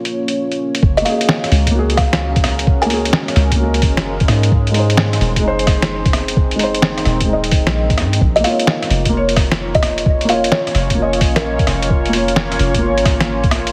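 Muffled, pitched-down sampler drums with a thumpy kick and a medium-tuned snare sit up front in this melancholic, nocturnal future garage excerpt, over a soft, round 808-style bass, a detuned, gritty ambient pad and a thick-felt upright piano whose action noise is audible, both pumping with the sidechain, while a woody kalimba with analog delay plays melodic lines of short, mellow plucks from 1.0 to 3.3 seconds and again from 8.4 seconds, all under a heavily compressed, radio-like sound with vinyl crackle.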